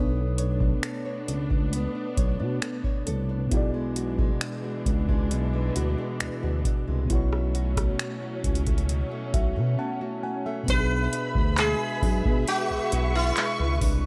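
Contemporary R&B at a slow 67 BPM in 4/4, sensual and longing, cut from a longer piece and set in a small room: a round, soft FM electric piano with chorus and phaser, lush bowed strings with vibrato and a fingerpicked nylon-string guitar play over a dark, gliding synth bass, while a booming analog drum machine with a deep kick, metallic hats, finger snaps, handclaps and rim clicks sits up front. The harmony moves through Bm9, E9/B and A69/B, and the electric piano plays a fill from 8.9 s into a brief break. At 10.7 s, as the chords shift to E7/B, a bright, buzzing sitar enters with a shimmering delayed melody.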